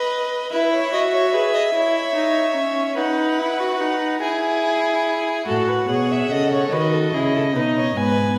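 In a straight 6/8, this lively yet stately baroque-style fugue excerpt for string quartet opens with a rich, smooth first violin carrying the melody over a warm, close second line, joined at 0.5 s by a focused, up-front viola and at 5.5 s by an expressive, soft-attacked cello gliding with portamento in the bass, each bowed by a single player with vibrato and set in the wet reverb of a scoring stage heard from further back in the room.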